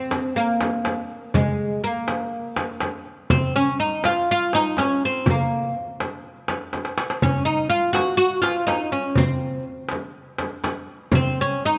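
Arabic maqam ensemble in a soulful, melancholic mood, this brief cut from a longer piece features a woody, fretless, double-strung oud played with a plectrum at the front of the mix, carrying the melody between Ab3 and Gb4 over a crisp, vintage-toned metal-shell darbuka, also up front, and a small-room frame drum, both struck with hard hands, with a drum fill at 6.7 seconds, all captured by close, detailed microphones in light reverb.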